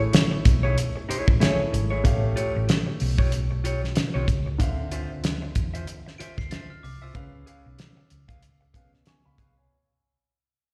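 Warm and smooth, this lush 1970s-style soul groove sways in 4/4 with a swung sixteenth-note feel, heard as a live gig through the venue's PA with a club and recital-hall reverb around it. A cloth-damped drum kit sits up front with a thuddy, fat snare, tight kick, hi-hat and a rolled-off top, touched by slapback echo. Beside it, a dark, round hollow-body short-scale bass is played with the fingers and sounds amped and close. A grand piano supplies intimate accompaniment with audible action noise, bathed in plate reverb and slapback echo, while an electric guitar through a small old amp picks a compressed, slightly broken-up, lo-fi riff with its own slapback. A glockenspiel struck with soft plastic mallets adds a faint bell-like shimmer from 6.2 to 7.3 seconds, and the harmony moves through rich seventh and ninth chords. The whole cut from a longer piece fades out from its first moment, and the piano plays a fill from 8.7 seconds.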